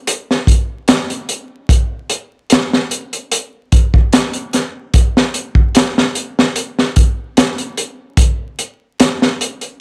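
A dry, gritty recording with vinyl crackle and little reverb sets a dark, smoky tone for this short trip hop passage, cut from a longer piece. At 74 BPM in 4/4, the groove carries a light swing on the sixteenth notes. The only part is a crunchy breakbeat drum kit of hi-hat, kick drum and snare, playing from 0.1 to 9.8 seconds. It sits up front with a small-room, acoustic character, saturated and rolled-off at the top, pairing a punchy kick with a high-tuned snare. The kit's smooth, dusky grit keeps the mood dark and close.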